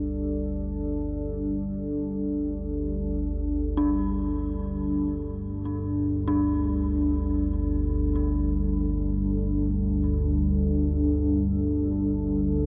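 Dark and desolate, this dark ambient drone drifts in free time, cut from a longer piece and resting on a single Gsus2 chord. A low analog drone, sawtooth and pulse-wave with pulse-width modulation and subtle chorus, sits up front and fades in across the full 12.7 seconds, evolving and mellow in tone. Above it, a deep, full-bodied pad of detuned sawtooth unison with a sine sub octave holds sustained chords in a moody register, its slow attack and long release softened by chorus and its own reverb. A pure quartz singing bowl struck with a felt mallet rings softly in the background on a high note, its slow beating adding a meditative shimmer. At 3.8 seconds an eerie, inharmonic FM bell enters with detuned arpeggios, its fast attack decaying into chorus and delay. A huge reverb with a long 8.4-second tail wraps the dark production in a cavernous, enveloping space.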